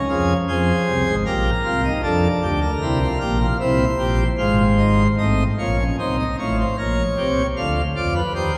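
A pipe organ on full plenum opens this solemn, contemplative excerpt of a baroque-style three-part fugue, its brilliant mixtures and romantic voicing placed up front as it plays alone across a range from Ab1 to F5. At a steady 76 BPM in 3/4, tuned to A4 = 438 Hz, the harmony moves from F minor through C7 toward a second section at 5.2 seconds that passes through F7/A, B-flat minor and G7/D. A wet church reverb with a 3.4-second decay surrounds the organ.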